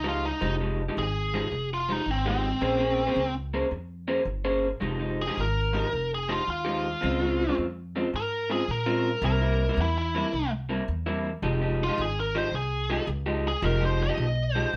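A swung 4/4 groove at 109 BPM carries this brooding, mournful F minor blues, cut from a longer piece, as the chords move from Fm9 through Bbm9 and Dbmaj7 to C7 and back. A biting, overdriven lead guitar solos across the full 14.8 seconds over a riff from a second electric guitar played through a small old amp, its tone dark, slightly broken-up, compressed and lo-fi. A woody, thumpy pizzicato upright bass on gut strings sits up front with both guitars, and the band plays live together in one room with moderate studio ambience and a rolled-off top end.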